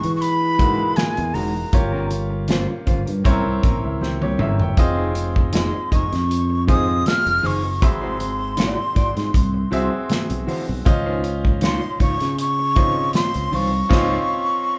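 A breathy jazz flute with vibrato and a soft attack carries the melody up front in this lush, romantic 1970s-style soul excerpt at 79 BPM in Db major, over a clear baby grand piano with audible action noise and long sustain, a slightly broken-up electric guitar riff through a small old amp in the background, a growly fingered electric bass, a dark, smooth modern studio drum kit with a punchy kick and a fill at 4.0 seconds, and very quiet, soft-handed congas entering at 0.6 seconds, the band playing live in one room under a moderate large studio reverb before a final band accent at 13.9 seconds.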